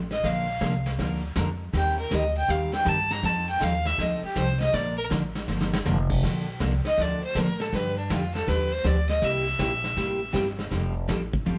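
A swung 4/4 feel at 160 BPM drives this playful, down-home western swing in Bb major, cut from a longer piece, with a woody, thumpy pizzicato upright bass and a vintage brush kit with dark cymbals and a punchy kick keeping time. A clear, intense bowed fiddle sits up front with light vibrato, soloing through both passes of the same section, while a bright, full-bodied picked dreadnought guitar accompanies on chords moving from Bb through Eb6 and F7 to G7, C7 and Fadd9. A short drum fill at 5.5 seconds leads into the second pass, and the band plays live together in one room with moderate studio reverb.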